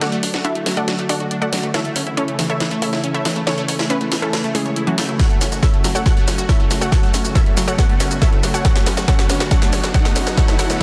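A punchy, tape-warm electronic kick drum lands up front at 5.2 seconds in this emotional, bittersweet uplifting trance build-up at 139 BPM in F# minor, joining an overdriven techno drum kit whose cracking snare, hi-hat, shaker and toms play a fill throughout. A lush, detuned unison pluck carries the melody with vintage 12-bit sampler grit and tape echo. A second, bright unison pluck plays arpeggios in the background through phaser and tape echo, both plucks pumping with sidechain over a very quiet, funky analog sawtooth bass. A background riser enters at 7.6 seconds as the chords move from D through A and F# minor to B minor, set in light digital ambience under a dense, heavily limited master.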